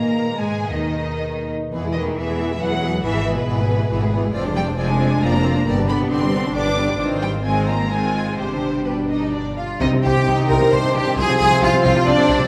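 A lush, distant violin section carries the melody of this dramatic, stormy classical excerpt, a fast romantic orchestral movement in triple time with a rubato feel. A second, more intense violin line runs beneath it, while an intimate, soft-edged viola section, a smooth cello section and a rich double bass section fill out the accompaniment and bass, and a ringing, fingerpicked concert harp spins arpeggios in the background. The harmony drifts through shifting chords before settling into a darker minor colour around 4.3 seconds. At 9.1 seconds an airy, very quiet flute section joins with its own line, and from 9.8 seconds mellow French horns and trombones add soft sustained chords, a tight trumpet section punctuates with stabs, and close, dry timpani strike briefly with hard mallets. The whole ensemble sits in a reverberant recital hall that lends the strings a spacious bloom.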